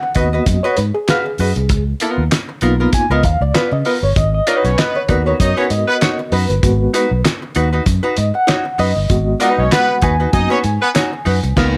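A mellow, reedy electric piano leads this cool, hypnotic funk excerpt, its stabs shimmering with fast tremolo and plate reverb as it takes the solo throughout. Beneath it, a cloth-damped drum kit gives a thuddy, muffled, lo-fi groove with a fat snare, tight kick, dark cymbals, hi-hat and handclaps, while a round, foam-muted fingered bass sits up front with a dark, punchy tone. A clean, hollow-bodied archtop guitar adds compressed accompaniment colored by wah and plate reverb. At 4.5 seconds a smooth horn section enters with a second line, warmed by tube saturation and touched with gentle vibrato, playing until 10.9 seconds. The harmony moves between G#m7 and C#13 over a swung sixteenth-note feel, and the band lands an accent at 11.6 seconds just before the cut.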